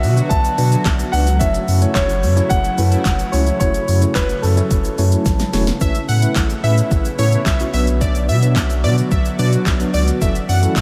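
A straight 4/4 groove at 109 BPM drives this bittersweet dance-pop fragment in B minor, built on an overdriven R&B drum kit (soft kick, fat snare, handclaps, hi-hat and shaker, up front), a thick, saturated sub bass with sidechain pumping, and a grainy egg shaker played very quietly and close. A dark, mellow grand piano with delay carries the melody until 5.5 s, over a detuned sawtooth pad with chorus and a worn, slightly out-of-tune electric piano with tremolo. After a drum fill, a punchy, bright unison lead with vibrato and delay takes over the tune from 5.8 s, while cathedral reverb soaks the mix in a dreamy haze as the chords move through Bm, F#m7 and Aadd9.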